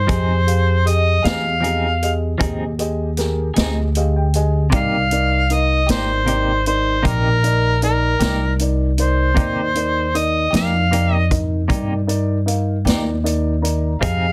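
Soulful and brooding, this slow 12/8 blues in C minor at 52 BPM features an up-front, mellow harmonica melody with light vibrato, overdrive and slapback echo over a woody pizzicato upright bass, a clean, scooped electric guitar with tremolo, a dark upright piano that adds fills at 3.6 and 12.9 seconds, and a vintage drum kit with a punchy kick and a rolled-off top, all moving from Fm7 to Cm7 in a dry, dense, heavily limited mix.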